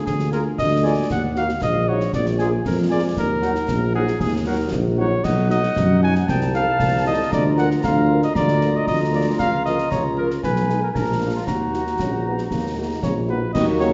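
Heard in a reverberant recital hall with a dull, rolled-off top end, this stern, martial wind-band march in 2/4 sets a mellow cornet melody up front over a prominent tuba bass, with tight woodwinds on a second line, very quiet French horns in accompaniment and concert snare, bass drum and dark clash cymbals, before a background euphonium joins at 12.0 seconds and a bright trombone section adds sustained chords at 13.5 seconds.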